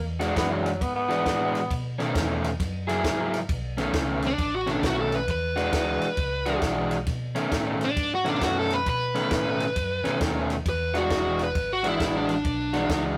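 A raspy, growling tenor saxophone opens this gritty, rollicking electric blues shuffle, its subtone, vibrato and scooped notes sitting up front in a short jazz-style phrase that ends at 1.8 seconds. Beneath it, a vintage fingered electric bass gives a round, punchy, foam-muted bottom. A hollow-body semi-acoustic guitar and a compact cocktail drum kit join almost at once, the kit pairing a tight kick and high-tuned snare with dark ride cymbals at a swung 134 BPM. From 4.3 seconds a smooth lead guitar takes the melody, and, like the riffing hollow-body guitar, it is picked, overdriven and placed up front over the B9 and E9 changes. Moderate reverb and a rough rehearsal-room character with a saturated glow give the sound a loose, lived-in grit.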